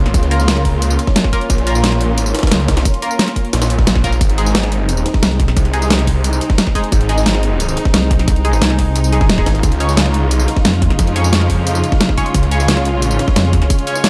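A dense, aggressive mix with digital ambience opens on a snarling distorted saw bass, growling and resonant with a moving notch, sitting up front over dark, bowed studio strings that pump under sidechain on sustained chords from Bbm through Ab to Db. This dark technical drum and bass piece at 177 BPM drives on a tight electronic kick, a layered dubstep kit with a huge snare, bright hats and tambourine in studio reverb, and a very quiet, gritty, pitched-up breakbeat kit. A nasal, band-passed chord stab with phaser and tape echo flickers in the background, while a pulsing, saturated wobble bass with chorus bursts in briefly around 5.2 seconds, returns from 7.9 to 11.0 seconds, and flashes once more near 13.4 seconds.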